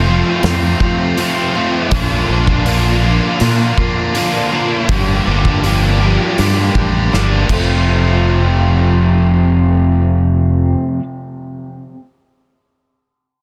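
Opening on a growly, up-front fingered bass beneath two overdriven guitar riffs, one biting and bright with reverse reverb and the other crunchy with ensemble chorus, plus a very quiet, shimmering, octave-doubled twelve-string acoustic picking arpeggios, this hazy, dreamy rock excerpt with shoegaze and dream pop leanings moves at 81 BPM in F major through F, Bb and Gm7 as a loose indie drum kit with dark cymbals and a tight kick in a pumping small room enters at 0.4 seconds, plays a fill from 7.1 seconds and stops at 7.7 seconds, the whole sitting in a dense, heavily limited modern master with little reverb.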